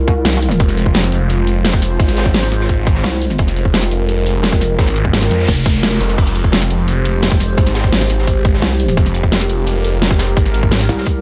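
An overdriven, tight electronic kick drives this tense, mechanical dark technical drum and bass excerpt at 172 BPM in F minor, sitting up front alongside a layered dubstep kit with a huge snare, crash, hi-hat and ride. Deep in the background, a crunchy acoustic breakbeat kit adds gritty, saturated hats and a high-tuned snare, filtered from below and rolled off at the top. From 0.6 seconds, a thick, swirling, detuned sawtooth bass with phaser and sidechain pumping holds the low end. A heavy pulsing pluck wobble bass, compressed and chorused, cuts in and out in short bursts before returning for good at 8.6 seconds. Behind them, a moody analog pad holds sustained chords on F minor, its detuned square, saw and triangle layers blurred by chorus, phaser and pumping. A noise sweep passes through the mix between 5.0 and 6.2 seconds, and the whole mix stays dry and loud.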